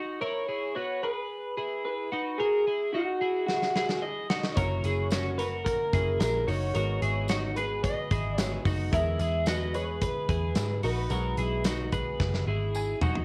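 A clean, compressed twelve-string electric guitar opens this nostalgic, youthful slice of jangly indie pop at 110 BPM with chiming arpeggios, joined at 0.2 seconds by a twangy, slightly broken-up lead melody from an electric guitar through a small old amp, both carrying subtle chorus and slapback echo. A big rock drum kit with a tight kick and rolled-off top bursts in with a fill at 3.5 seconds, and at 4.6 seconds a dark, round muted picked bass, a bright, woody, slightly detuned upright piano with tube saturation sitting in the background, and a very quiet, jingly tambourine fill out the sound. Chords move from E through F#7 and G#m7 to B6 in light studio reverb before a closing drum fill and a brief piano fill at 12.5 seconds.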